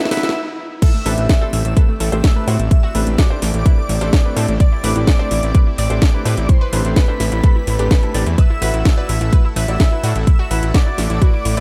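A short house drum fill opens this progressive house excerpt, followed by a brief stop before the drop lands at 0.8 seconds, when a punchy, tape-warm electronic kick enters up front at 127 BPM in a straight 4/4. The fat, detuned sawtooth bass joins at 1.1 seconds, thick and sustained with a filter sweep and sidechain pumping, while the drum kit adds a cracking snare, metallic hats and crash cymbal, both pumping against the kick. In A dorian, the harmony rests on Esus2 over A, moves to Am11, and returns to Esus2 over A at 8.4 seconds, carried by a very quiet, lush supersaw pad and stabs from a smooth, vintage grand piano treated with dub echo and pumping. In the background, a crystalline wavetable pluck runs arpeggios with chorus, echo and a filter sweep, and an expressive, dark portamento lead sings the melody with warbling vibrato and subtle chorus. High above it, a soft, airy second lead with a moving notch, chorus and dub echo adds a dreamy, expansive shimmer to a dry, close mix.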